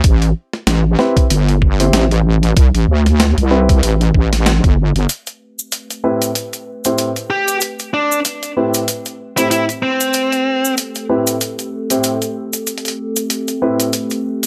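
A heavy, saturated wobble bass with a detuned, resonant edge anchors this playful, funky glitch hop cut, backed by a gritty, pitched-down thumpy kick and a compressed sampler-style kit with a high-tuned snare. Dark, mellow grand piano stabs run through sidechain pumping, a low-pass filter and digital delay. Once the bass drops out at 5.1 seconds and the harmony shifts from Am7 to Am9, a warbling, nostalgic lo-fi pad and a grainy, close cabasa enter, while a distorted high-gain lead guitar carries the melody from 7.3 to 10.7 seconds, roughened with 12-bit sampler grit and delay, in a light reverb.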